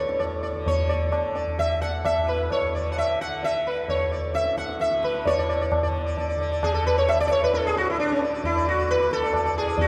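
Sitar and tanpura sound together at the start of this cut from a longer Hindustani classical performance, with tabla joining at 0.1 s, all set in D within raga yaman for a devotional, serene mood. The plectrum-plucked sitar carries the melody up front, its buzzing tone shimmering over sympathetic strings as it ranges from C#4 to F#5. Beneath it, the softly plucked tanpura holds a low, warm drone between D2 and D3, sitting well back in the mix. The tabla is low-tuned with a short ring and a small-room character. The music moves in a straight 5/4 at 131 BPM and speeds up throughout, shifting into a new section at 5.3 s. A wet concert-hall reverb with a 2.1-second decay surrounds the acoustic instruments.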